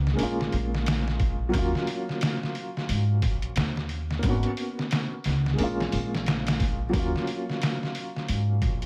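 Trip hop with a smoky, hypnotic mood, this short fragment cut from a longer piece sits in a swung 4/4 groove at an unhurried pace. A felt-muted upright piano carries the accompaniment, its soft, dark, boxy tone up front with audible action noise, and tremolo and tape echo colour its chords as they move from Bbm7 through Ebm9 and Abm11. Beneath it, a pizzicato upright bass with steel strings gives a woody, growly low end. A sampler-style drum kit enters at 0.1 seconds, compressed, pitched down and overdriven, pairing a thumpy kick and a medium-tuned snare with hi-hat, all muffled yet placed up front. Small room ambience and a layer of vinyl crackle surround the playing.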